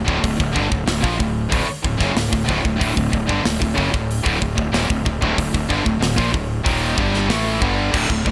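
A straight 4/4 pulse at 94 BPM drives this aggressive, dark heavy metal excerpt, where an up-front acoustic drum kit with bright cymbals and a tight kick, entering at 0.1 seconds, backs a picked distorted guitar riff, a double-tracked overdriven guitar sitting further back, and a growly fuzz bass, all on a D5 chord in a small room, before a high-gain guitar joins in the background at 7.9 seconds.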